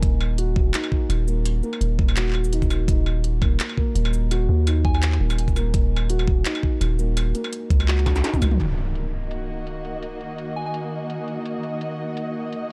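A half-time drum and bass groove at 168 BPM with a light swing sets a spacious, cinematic mood in Eb minor: an overdriven, knocking electronic kick and a filtered industrial kit of clanging snare, crisp hats, handclaps, shaker, toms and struck metal sit under a deep sine 808-style bass, while a felt-muted upright piano plays boxy, dark arpeggios through dub echo and a soft FM synth bell sounds faint notes in the background, until a drum fill and an electronic impact at 8.6 seconds bring in an intimate bowed string section with sidechain pumping, joined shortly after by a flickering, grainy texture, all in a dry, dark production cut from a longer piece.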